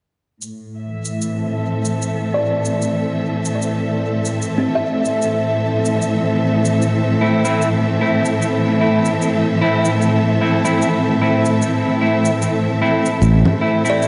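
A swung 4/4 groove of tape-warm cabasa and congas, re-recorded in a large room, carries this deep, spacious ambient dub fragment, where a rich, bowed string section holds sustained A minor chords up front, a buzzing, woody kalimba plays echoing arpeggios from 2.3 s, a dark, clean electric guitar adds gritty, dub-echoed stabs from 7.2 s, and a bright fingered electric bass briefly sounds a low A at 13.2 s, all soaked in a lush hall reverb with a dreamy, softened top end.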